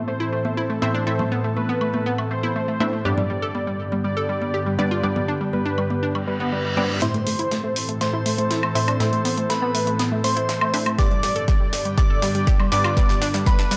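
A deep, tape-warm electronic kick sits up front from 11.0 seconds in this expansive, bittersweet progressive house passage, cut from a longer piece, where a thick unison lead melody weaves through round analog pluck arpeggios, punchy unison pluck stabs and an airy, breathy pad, with the pad and both plucks pumping against the sidechain. Background congas and woodblock carry the opening half until a reverse cymbal leads into a build-up at 7.0 seconds, where a pure FM bell adds a second line, a deep house kit brings a fat snare and hi-hats with a drum fill, and filter sweeps move across the arpeggio and pluck. Tape echo trails the plucks, lead and bell, while a light reverb glows around the mix.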